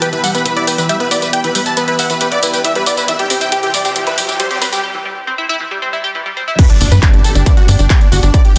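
Euphoric, uplifting trance cut from a longer piece, opening on a huge, airy supersaw lead with dub echo over a silky analog string pad with 12-bit sampler grit and a tight sequenced synth arpeggio coloured by chorus and phaser, all pumping against an overdriven techno kit of crash, handclaps, hi-hat and tambourine. Background risers and swells build from 2.4 s through a break. At 6.6 s the arpeggio stops and the drop lands with an impact and a distorted, up-front electronic kick, followed by a punchy sawtooth sequencer bass entering at 6.8 s, all inside a lush hall reverb and a dense, heavily limited master.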